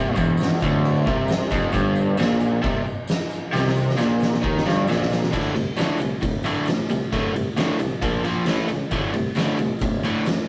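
Swaggering and menacing, this short garage rock excerpt pairs a double-tracked, overdriven electric guitar riff up front with an overdriven tuba carrying the bass line, an oversized low-tuned drum kit with a fat snare and punchy kick pounding out crash, ride and a fill from 3.5 to 5.3 seconds, and a jingly tambourine tucked in the background, all inside a rough, saturated rehearsal-room sound with stone room reverb.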